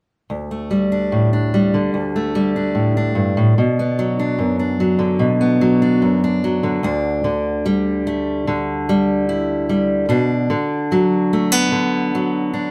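A fingerpicked steel-string acoustic guitar plays alone, up front and close, in this gentle, peaceful folk excerpt at 74 BPM in D major, moving between Dsus4 and Bm chords. The playing reaches from low D2 up to E4, its concert-instrument tone detailed by close microphones in a small room with moderate ambience. After the opening passage, a second section begins at 6.8 seconds and returns to the same Dsus4 and Bm harmony.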